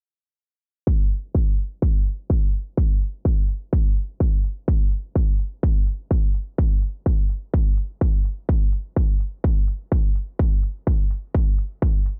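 A digital, low-pass-filtered ambience frames this emotional, dreamy house fragment, where a punchy, tape-warm electronic kick drum sits up front from 0.9 seconds in a small room while crisp, layered electronic hi-hats, themselves filtered, hover far in the background, with a filter sweep running across the drums until 12.2 seconds.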